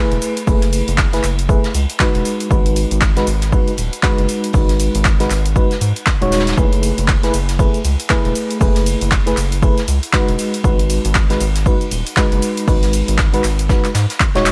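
Moody, late-night deep house with a swung shuffle, where mellow, warbling FM electric piano stabs drenched in chorus, tremolo, tape echo and sidechain pumping drift between F#m11 and G#m7 over a round, dark analog bass that also pumps, while a punchy layered electronic kick from 0.5 seconds anchors soft jazz brush kit cymbals and snare, a dry, overdriven analog drum machine's cabasa, handclaps, hats and ride, all beneath a veil of vinyl crackle.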